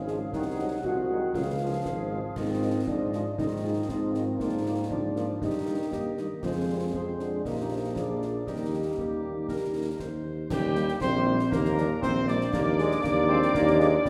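A festive, proud military-style march for wind band in 2/4 at 118 BPM, set in Eb major with a straight feel, heard as a short cut from a longer piece. A mellow, distant trumpet section carries the melody from the background, while a clear, close-miked woodwind section and a warm euphonium share a second line above the up-front tuba bass, which has a soft attack and light vibrato. A vintage-toned trombone section holds sustained chords and a French horn section fills in the accompaniment, as concert snare drum, concert bass drum and clash cymbals with dark cymbals keep the march going. At 10.5 seconds a bright wooden piccolo enters with an expressive, tongued second line high above the band. The harmony moves through Ab7/C, Db and Fm7/Ab before settling on Eb, later colored by a Ddim/Eb chord, and a wet hall reverb gives the whole band a roomy, ceremonial sound.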